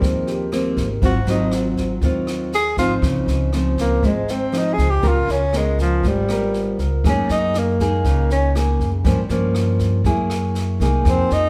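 A sophisticated, sunny bossa nova at 120 BPM opens with a breathy, mellow tenor saxophone soloing up front with vibrato, subtone and scooped notes over fingerpicked, full-bodied nylon-string guitar, woody pizzicato upright bass and a brushed drum kit with boomy kick, rim click and snare, while a very quiet, intimate grand piano with audible action noise surfaces briefly at the start and again from 6.8 to 9.1 seconds, the group heard from further back in a wet, large studio reverb as the harmony moves from Ab69 through Dbmaj9 and Gb69.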